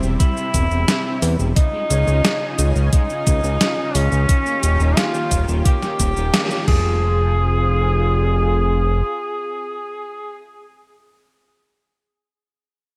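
A mellow tenor saxophone with vibrato carries a nostalgic, cinematic synthwave melody in F minor at 88 BPM, over silky detuned string pad chords, a fat, nasal, saturated analog bass, a raw overdriven garage guitar riff in the background and detuned 8-bit drum machine beats with gated reverb alongside a thumpy electronic kick, all set in a lush hall and bright 1980s-style digital production, with a band accent at 6.3 seconds before the drums and guitar drop out and the sax and pad carry on to 10.5 seconds in this excerpt.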